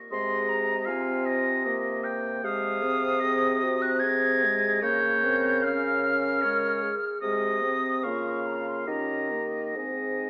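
In a rubato 3/4 at roughly 66-79 BPM, this tender excerpt of a slow romantic movement for wind quintet sits in Ab major and arrives on an Ab chord at 9.8 seconds. An airy concert flute with vibrato and a crisp attack carries the melody above a clear, up-front oboe second line, while a dark, smooth-topped clarinet and a mellow, soft-attacked French horn fill in the accompaniment over the bassoon's bass line. The quintet rings in a moderate concert hall reverb, heard through an AM radio sound.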